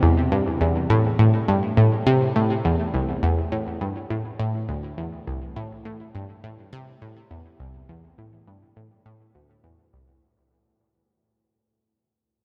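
A straight 4/4 pulse carries this cosmic, luminous ambient fragment, where a lone round, nasal, detuned analog pluck with a sawtooth edge and a noise layer sits up front in a low register, coloured by chorus, phaser and analog delay and bathed in a huge, wet reverb as the whole 10.2 seconds fade out.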